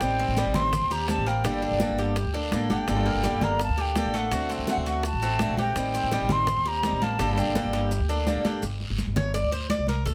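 The full ensemble starts together in this sultry, danceable slice of Cuban son and guajira in straight 4/4. A hollow, airy concert flute carries the melody, close-miked, with vibrato and a crisp attack, while a bright, boxy, picked swing-style acoustic guitar sits up front as accompaniment. A Cuban tres with doubled metallic strings adds picked arpeggios, and a woody, thumpy upright bass with gut strings plays pizzicato lines, dark and prominent in the mix. Underneath, thin-skinned congas sound in a small room, tight high-tuned bongos and cowbell stay very quiet and dry, and a raspy, band-limited guiro and grainy, saturated maracas sit in the background, all under light reverb. A drum fill arrives at 7.7 seconds, the flute drops out shortly after, and from 8.6 seconds the guitar falls away so the tres takes a brief solo over a bare G5 chord.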